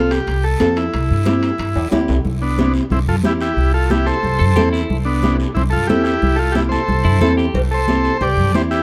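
A buzzy vintage combo organ carries the melody up front, its light vibrato giving this danceable, festive cumbia a lively sheen. Beneath it, a woody, growly upright bass played pizzicato sits equally forward, while a bright, fingerpicked nylon-string guitar fills in the accompaniment over an opening move from F to C. In the background, high-tuned congas struck with hard hands ring out, a raspy, saturated guiro scrapes along, and band-limited timbales and cowbell with a metallic ring play through the opening, dropping out during the drum fill that begins at 1.8 s and returning near the end. A twangy, picked electric guitar slips in briefly as a second line at 4.4 s and again at 7.0 s. Light reverb gives this straight-feel excerpt, cut from a longer piece, a touch of room.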